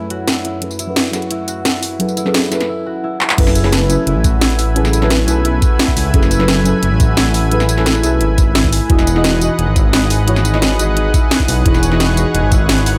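This soulful, lush liquid drum and bass excerpt at 174 BPM opens in F# dorian with a deep, soft chord stab carrying chorus and tape echo, a thick, airy unison pad, and a ringing concert harp playing arpeggios in the background through a dub echo. In the opening build-up, until 3.4 seconds, both the stab and the pad are filter-swept while an electronic, layered drum kit with a cracking snare, bright hats, handclaps and tambourine plays up front with overdrive. A short break and a drum fill lead to the drop at 3.4 seconds, where a dark, detuned saw bass enters with a rumbling, beating, saturated tone, joined by a gritty, thumpy electronic kick re-recorded in a large room. The harmony rests on F#m11 before moving to Emaj9 at 8.9 seconds. The mix is dry, with the bass and drums sitting forward beneath the chorused, lush chords.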